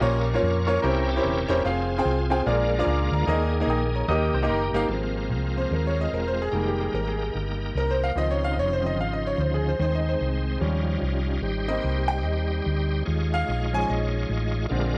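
Uplifting and soulful, this swung uptempo gospel excerpt sets a brilliant, up-front baby grand piano and a round, punchy hollow-body electric bass against a full, shouting tonewheel organ with light overdrive, chorus vibrato and a slow rotary speaker. A clean, twangy electric guitar with a warbly pitch drift adds brief background lines at 0.7 and 4.1 seconds. From 4.9 seconds the piano takes a solo over lush extended chords, all set in a moderate stage reverb.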